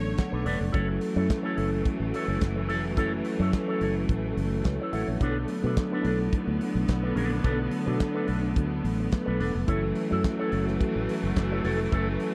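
A damped 1970s drum kit sits up front with a fat snare, a tight kick, hi-hat and handclaps, driving this danceable disco groove in straight 4/4. Beside it, a fingered electric bass sounds dark, round and foam-muted, also placed close and forward. A mellow tine electric piano carries the accompaniment and plays short fills at 0.0, 4.4 and 8.8 seconds, while an electric guitar with an envelope filter adds bright, twangy, picked lines dressed in spring reverb. A clear, lush studio string section holds sustained bowed chords with vibrato and a smooth top. The harmony moves between Bm7 and F#m7 across this short clip, cut from a longer piece, with a dry, close 1970s-style studio sound and only light reverb.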